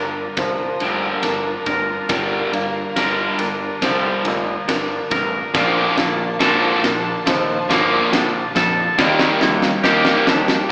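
Post-rock at 70 BPM in G minor, this brooding, cathartic build-up moves from Gm7 to Bbmaj7 to Ebmaj7, with a very quiet, bowed string section holding sustained chords beneath a felt-muted upright piano's mellow arpeggios and a twangy, scooped clean guitar picking arpeggios of its own. A cranked stack guitar plays an overdriven riff through spring reverb over a growling, overdriven fingered bass, while a big rock drum kit with a punchy kick and fat snare sits up front from 0.4 seconds, playing a drum fill across the whole passage. A bright distorted guitar riff joins at 5.5 seconds, and a wet scoring-stage reverb and an AM-radio tone color the whole.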